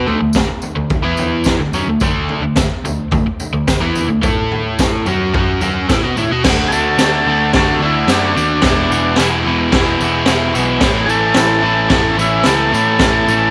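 An overdriven electric guitar leads this raw, rowdy garage rock clip, its bright, double-tracked riff sitting up front with a compressed, picked bite. Underneath, a vintage muted electric bass plays with a dark, round, foam-muted tone, while a raw garage drum kit pushes a straight 4/4 feel with a boomy kick, high-tuned snare, crash cymbal and toms, all gritty and saturated with a rolled-off top. A jingly tambourine rattles in the background from 0.3 seconds onward. The opening passage moves through D5 and E5 power chords to an F#madd11. At 6.7 seconds a buzzy combo organ enters with an overdriven melody and light vibrato over D, E and A chords. A moderate spring reverb gives the whole small-room sound a rough, lively edge until the clip is cut off at 13.5 seconds.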